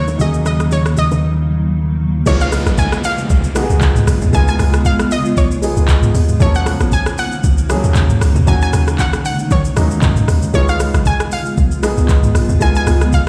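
Swung sixteenths at 116 BPM in 4/4 drive this deep, hypnotic amapiano clip, cut from a longer piece, with a smooth, tape-warm R&B kit up front: soft kick, silky hi-hat, handclaps, rim click, shaker, toms and a crash, alongside close, dry bongos and congas tucked in the background. Over Eb minor 7 and Db7 harmonies, a bright, round analog pluck carries the melody with a warbling vintage character, chorus and tape echo. Underneath sit a baby grand piano playing accompaniment and a blurred, evolving granular cloud pad that holds sustained chords, pumping with sidechain in its own reverb. A punchy, amped fingered electric bass opens the track, and the drums drop out at 1.2 seconds before the drop lands at 2.3 seconds. At the drop, a hollow, bouncy log drum bass with a fast attack takes over the low end, and a faint electronic downlifter sinks into the background. The whole mix sounds as though it is played on a big sound system in a bare room, ringing with stone-room reverb.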